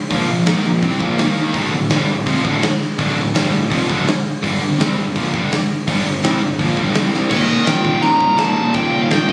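A dark, high-gain lead guitar with tape echo bursts up front at 7.3 seconds, just after a drum fill, lifting this relentless, epic heavy metal excerpt into its final stretch. Beneath it, a pair of bright, picked high-gain guitars drive the riff, one sitting in the background, while a growly fuzz bass adds overdriven grit and an acoustic rock kit pounds with a punchy kick, a medium-tuned snare, hi-hat and crashes. A very quiet, double-tracked distorted guitar joins the riff alongside the lead, and the whole cut sounds captured on a phone in a club, with a raw, roomy edge.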